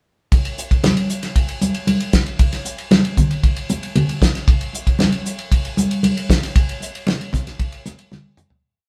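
The recording has the sound of a band playing together in one studio room, with moderate studio reverb. This is a slick, driving jazz piece in a straight 4/4 feel, carried entirely by drums and congas from 0.3 seconds. The damped 70s kit sits up front, dry and acoustic with a rolled-off top. Its dark cymbals, fat snare, tight kick, hi-hat and toms build a fusion ride groove. Beside it, the congas play their pattern with a thick-skinned, medium-tuned, vintage tone that is band-limited and warm. The piece begins fading at 6.6 seconds, and a drum fill arrives at 8.1 seconds as the sound falls away.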